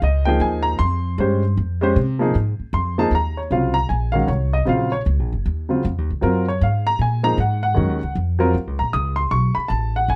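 Intense and spiritual, this modal jazz excerpt swings at 155 BPM in 4/4, settling into Eb dorian from 3.1 s. A baby grand piano carries the accompaniment across its range, its intimate, natural tone marked by short sustain and audible action noise. An upright bass holds the low end with pizzicato on gut strings, giving a woody, dark, thumpy sound placed up front alongside the piano. The harmony moves from Bbm11 to Ebm11 at 3.1 s, then turns to B7sus2 at 9.3 s. Close, detailed microphones and little reverb keep both instruments present and immediate.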